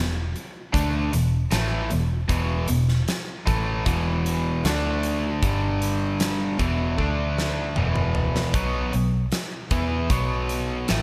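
Blues rock power trio with a southern rock edge, this driving, gritty fragment of a longer piece rides a straight, unhurried groove built on a cranked, double-tracked stack guitar riff, overdriven and bright with a touch of spring reverb, moving through power chords on E, D, G and B. Beneath it a vintage fingered electric bass sits dark, round and foam-muted, while a big rock drum kit enters at 0.4 seconds with a fat snare, tight kick, hi-hat and toms in a stone room. The kit breaks into a fill from 7.0 to 8.6 seconds, and the mix stays dry and up front.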